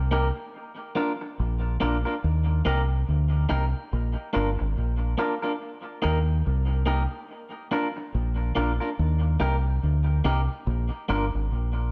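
A round, punchy, dark fingered dub bass sits up front through this laid-back, uplifting roots reggae cut at 71 BPM in Eb major, with a swung sixteenth feel, while a clean, twangy, scooped electric guitar carries tape echo as the harmony alternates between Eb and Bb in a light-reverb, echo-heavy mix.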